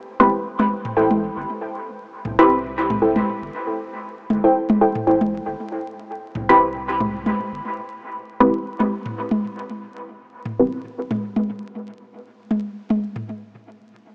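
Dub techno at 117 BPM in A minor, deep and hazy, with a light sixteenth-note swing, cut from a longer piece and resting on an Am7 chord. Muted, detuned chord stabs with phaser and dub echo sit up front over a round, soft sub bass and tape-warm analog electronic toms, while a warbling, lo-fi chorused pluck carries a riff from 1.0 to 5.2 seconds. From 5.1 seconds filter sweeps run through both the stab and the pluck as the chord turns rootless, and the whole piece comes through a dry, gritty recording with vinyl crackle, a small-speaker sound and light digital ambience.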